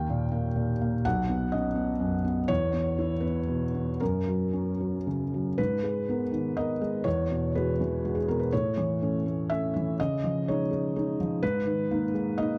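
In a flexible, rubato three-four at 124 BPM, a felt-muted upright piano plays alone for the full 12.6 seconds of this excerpt from a longer piece. The style is neoclassical minimalist piano in G# minor, and the mood is wistful and melancholic. The piano spans B1 to G5 and sits up front with a soft, mellow, intimate tone, its audible action noise close at hand and a tape echo trailing behind it. Chords move from D# through Badd9, E5 and F# before a second passage begins at 5.6 seconds on G#madd9, then passes through Eadd9, A and C#add9 and settles back on G#madd9 at 11.4 seconds. The dry, close recording has a 1970s studio character, with a small-room reverb around it.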